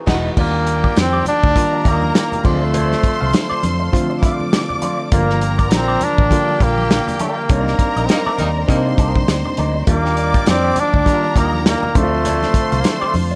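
A band accent opens this lush 1970s-style soul piece at 101 BPM with a swung sixteenth feel, as a very quiet, breathing harmonium holds chords under a gritty, barky electric piano with fast tremolo, a compressed wah guitar riff in the background, distant bowed violins carrying a second line, a round foam-muted fingered bass, a punchy up-front soul kit and soft ringing congas. An up-front flugelhorn with scooped notes takes the smooth, cinematic melody over chords moving from Ebmaj9 through Dm7, Gm7 and Cm9. A mellow, roomy horn section adds stabs from 8.1 to 9.1 s during a second band accent.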